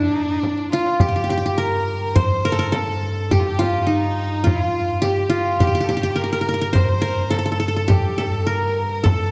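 An up-front qanun, plucked with fingerpicks and bright-edged with its triple strings, carries the melody in this hypnotic, soulful Turkish makam ensemble piece in G makam nihavent, moving at 104 BPM in a straight 4/4. Behind it, a studio violin section with light vibrato and a single nasal, earthy violin with an airy bow trace a second line, while a crisp metal-shell darbuka sits very quiet and a deep, close and dry frame drum enters at 0.4 s as a drum fill leads into the next section at 1.0 s. From that point a double bass holds a floating, sul tasto drone on G2, and the whole cut from a longer piece sits in a concert-hall reverb with a dark production.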